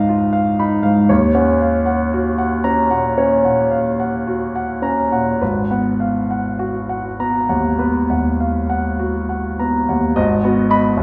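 A clear concert grand opens on a C#9 chord and drifts through D#m7 and G#m9 before settling on G#m7 at 10.2 seconds, in a hazy, nocturnal piece of impressionist classical solo piano in G# dorian. The playing is rubato at a slow 50-60 BPM in 4/4, spanning G#1 to B5, with a deep, natural bass, and the instrument sits up front even as a wet recital hall reverb places the listener further back in the room. This is a short portion cut from a longer piece, tuned to A4 = 439 Hz.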